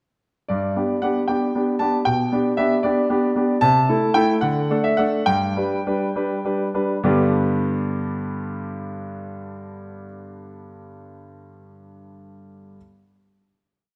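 Elegant and cheerful, this short, complete classical-period piano sonatina in G major moves in a straight 6/8 at 67-78 BPM in dotted quarters, easing into a slowdown from 2.8 to 7.0 seconds before a final chord rings from 7.0 seconds. A solo concert grand, clear and up front with deep bass, carries a single-line melody over repeated chords that move from G through G/B, Am/C and D back to G. The open piano sound is bathed in the wet reverb of a recital hall.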